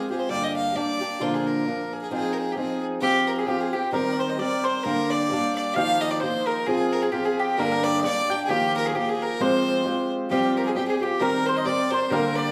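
Celtic folk in F dorian at 132 BPM with a swung 2/4 feel, wild, dark and lively, where a rich, earthy fiddle carries the melody up front with an airy bow while a boxy, fingerpicked swing-style acoustic guitar accompanies, a round, double-strung picked mandolin adds a second line from 3.0 seconds, and a soft-edged wooden flute with vibrato drifts in distantly at 10.3 seconds, all captured as a band playing live in one room with a generous large-studio reverb in this short cut from a longer piece.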